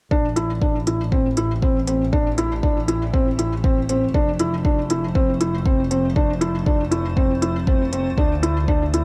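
A felt-muted upright piano sits up front with a soft, dark riff, its thick felt and audible action noise trailing tape echo, in this intimate, melancholic piano-and-strings electronica excerpt at 119 BPM in A minor, moving from Am7 to F to Dm7. Beneath it, a distant bowed double bass section with light vibrato carries the low line through tube saturation and sidechain pumping, while a deep, tape-warm electronic kick and smooth hi-hats keep a straight 4/4 pulse. From 1.7 seconds a bright, blurred granular cloud pad fades in behind everything, holding sustained chords with its own reverb and sidechain pumping under a light room reverb.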